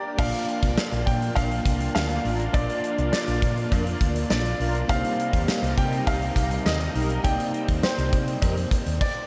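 A bell-like tine electric piano fill opens over a lush unison pad and a clear baby grand piano melody drenched in shimmer reverb and tape echo, before a punchy gated 80s drum kit with tambourine and crash, a round fretless bass, a quiet crunchy overdriven guitar and a faint metallic cowbell join at 0.2 seconds, with mellow synth brass stabs arriving at 1.4 seconds in this urgent, moody 1980s-style pop excerpt at 102 BPM, moving from Bb to Cm7 in a dreamy mix soaked in huge ambient reverb.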